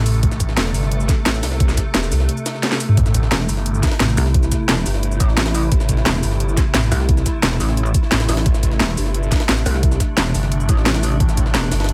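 A knocking, overdriven electronic kick sits up front in this dark, aggressive slice of technical drum and bass, driving a mechanical, straight groove from a longer piece. Around it, a layered drum and bass kit adds a cracking snare, bright hats, shaker and toms with its own grit of overdrive, and a drum fill lands at 2.6 seconds. Further back, a compressed, pitched-up jungle sampler-style kit contributes a gritty, medium-tuned snare and filtered hats. Underneath, a thick, swirling detuned saw bass churns through a phaser and overdrive, joined at 3.3 seconds by a heavy, pulsing pluck wobble bass thickened with chorus. A swarming, tense drone of slow-building granular chords hovers behind everything, pumping with sidechain compression and bathed in its own reverb, while the mix overall stays dry, close and loud.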